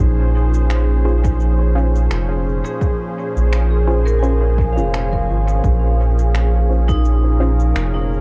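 A lightly swung 4/4 groove with a sixteenth-note lilt sets a deep, hazy ambient dub mood in this short excerpt, which rests on a single Bbm7 chord throughout. A soft, round sub bass sits up front with transformer saturation, while a smooth, detuned analog pad holds sustained chords behind it with chorus. Dark, ringing vibraphone arpeggios played with hard mallets carry a slow motor vibrato and drift through tape echo. Quiet electronic cabasa and finger snaps arrive at 0.5 seconds, wrapped in cassette tape colour and dub echo, and a muted, mellow chord stab enters in the background at 1.0 seconds with a filter sweep, chorus, vintage 12-bit sampler grit and dub echo. A punchy, layered electronic kick, re-recorded in a small room, joins at 1.2 seconds, and the whole piece carries the soft haze of a home cassette recording with digital ambience.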